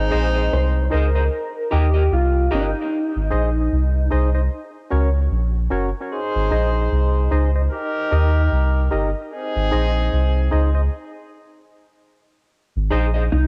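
A deep, round dub sub bass sits up front through this laid-back reggae excerpt in Ab major at 75 BPM, its slightly saturated tone anchoring swung sixteenths while a hollow, percussive organ stab with chorus and tape echo recurs across the groove. A clean, fingered electric guitar carries the melody at the opening, briefly shadowed by a dark, slightly broken-up picked guitar that enters just ahead of it. A distant, loose horn section returns as a second line from 6.1 seconds before the band drops to a stop at 10.9 seconds, all of it captured with a spacious, lightly reverberant home-cassette character.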